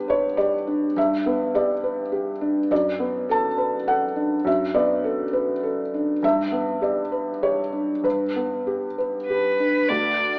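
A felt-muted upright piano, mellow and boxy with audible action noise, opens this melancholic, reflective neoclassical excerpt at 102 BPM in a rubato 3/4, moving from G through Bm7/F# back to G before a veiled, con sordino violin with light vibrato enters at 9.3 seconds for a brief melody, the pair sitting up front in a large studio reverb with an AM radio sound.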